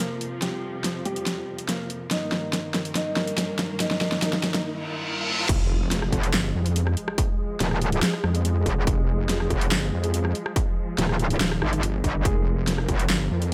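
A half-time 4/4 groove at 142 BPM drives this heavy, chaotic wobble dubstep excerpt in F minor, where a dubstep drum kit with a huge snare, bright hats, handclaps and rim clicks plays a fill under a soft, felt-muted upright piano melody with digital delay and lush, woody strings that pump with sidechain compression through a low-pass filter. A background riser and reverse cymbal build through a brief break until the drop at 5.5 seconds, marked by an impact, brings in a distorted electronic kick and a saturated, detuned wobble bass, joined at 6.1 seconds by an aggressive, metallic FM wobble bass with distortion and chorus. The muted piano returns briefly at 12.3 seconds amid light reverb and digital ambience.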